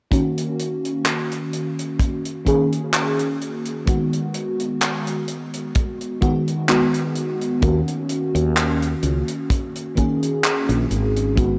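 A light studio reverb gives this short vaporwave excerpt a close, intimate sound, with its nostalgic, woozy mood drifting along in a slow, gently swung 4/4. An FM electric piano layered with a soft pad carries the accompaniment throughout, its lush, dreamy tone colored by a detuned shimmer, a faint noise layer, tremolo, analog chorus and analog delay, each note striking quickly and then decaying. Underneath, a tight, natural acoustic kick sits up front alongside a small-room funk kit of handclaps and hi-hat, the kit alone treated with gated reverb. At 7.6 seconds a woody fretless electric bass joins, dark, growly and round with a hollow-body character. The harmony moves from D#m7 to G#m7 at 3.9 seconds and back to D#m7 at 7.6 seconds.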